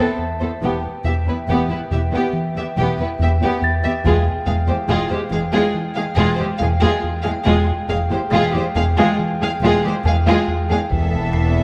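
A barely audible electronic impact opens this eerie, mysterious suspense-film cue as soft-attack, sul tasto strings sound, with an intimate chamber violin section carrying the vibrato melody over a floating symphonic violin second line, dark violas and background cellos, while a glassy, beating glass harmonica holds ethereal chords and a tinkling, slightly out-of-tune music box glimmers behind them. A fat, detuned, saturated sawtooth analog bass riff joins at 0.2 seconds, a close double bass section enters at 0.6 seconds, and compressed taiko drums struck with hard sticks thud in the background at 4.1 and 10.9 seconds, all within a moderate scoring-stage reverb.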